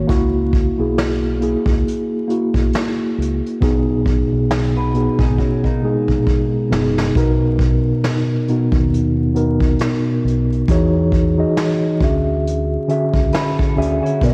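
A mellow, up-front tine electric piano and a dark, round dub bass open this nostalgic, reflective lo-fi hip hop excerpt, with a filtered, cassette-worn piano tone and a punchy, fingered low end, joined almost at once by a brushed vintage kit with a medium-tuned snare and rolled-off top. The groove carries a gentle swing, and the harmony drifts through lush extended chords under light reverb, vinyl crackle and the hazy feel of a home cassette recording. A faint, slightly broken-up picked electric guitar through a small old amp slips in at 4.8 seconds with tape echo as the drums play a fill from 5.4 seconds, then returns briefly at 13.3 seconds.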